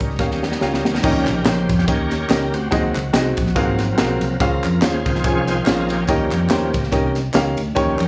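Uptempo gospel at 143 BPM in a swung 4/4, jubilant and soulful, moving through Eb7, Ab7, Ab13 and Dbmaj7 in this short cut from a longer piece. A bright, shouting tonewheel organ with slow rotary speaker, light overdrive, chorus vibrato and key click holds sustained chords and takes a solo from 1.0 seconds, over a growly fingered electric bass, a crisp fusion kit with dark cymbals, a high-tuned snare and punchy kick that plays a fill at 0.2 seconds, and an up-front, clear baby grand piano. A very quiet, twangy clean guitar adds a brief second line early on, while tambourine, egg shaker and group handclaps sit close and dry in the background under light studio reverb.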